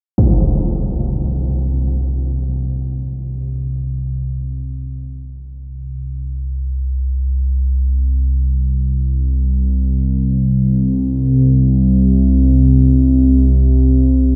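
Unsettling and dark, this ambient fragment from a longer piece is carried by a single analog synth drone that enters at 0.7 seconds and holds until the cut at 14.4 seconds. The drone sits low, between C2 and C3, and blends sawtooth and pulse-wave tones with pulse-width modulation, so its evolving texture keeps shifting as it sustains. Its slow attack and long release blur the edges of each sound, and a chorus effect thickens it while it stays up front in the mix. A filter sweep runs across the drone through the whole passage, adding to its restless character. The sound is bathed in a cavernous cathedral reverb with a 6.5-second decay, and a worn cassette-tape quality lends a warbling pitch drift, with the tuning set slightly flat at A4 = 438 Hz.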